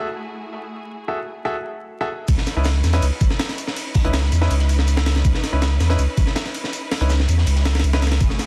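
A saturated, thick sub bass and a gritty, thumpy sampler-style breakbeat kit with kick, ride and high-tuned snare drop in at 2.3 seconds of this atmospheric, nostalgic 162 BPM drum and bass and jungle excerpt in C# minor, joining lush, distant bowed strings under a filter sweep and brilliant grand piano stabs with dub echo over F#m9 moving to C#m9, while a dark, crunchy second kit of hi-hat, shaker and snare sits in the background beneath vinyl crackle and a dense, heavily limited master.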